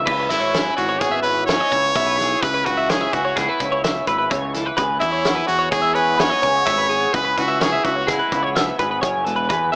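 In a straight 5/4 at 127 BPM, this wistful, playful math rock and midwest emo fragment in A major sets a brilliant, punchy trumpet melody with vibrato up front from 0.3 to 8.5 seconds over clean, chorused guitar arpeggios, a slightly broken-up guitar through a small old amp with phaser, a round, overdriven picked bass and a distant, roomy indie drum kit with a fat snare and dark cymbals, all heard through a home-cassette, small-speaker sound with light reverb as the harmony moves from E to a rootless Amaj9 at 4.8 seconds.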